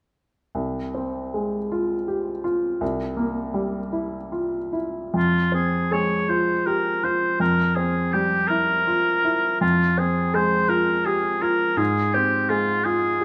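Unfolding in a rubato 6/8 at 46-56 BPM by the dotted quarter, this yearning, melancholic romantic classical passage in F minor, tuned to A4 = 438 Hz, opens with a clear, short-sustained baby grand piano accompaniment at 0.5 seconds before a warm oboe with light vibrato enters at 5.1 seconds to carry the melody, both set up front in a moderate recital-hall reverb.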